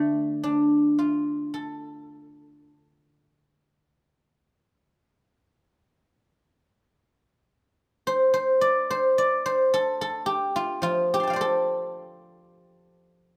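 Contemplative and full of longing, this slow, freely flowing passage of traditional Chinese solo music, cut from a longer piece at 48-55 BPM in the D yu mode, features a lone guzheng played with fingerpicks, its silvery, ringing tone sitting up front between D3 and C6, captured by close, detailed microphones in a moderate recital-hall reverb, with a new section beginning at 6.3 seconds.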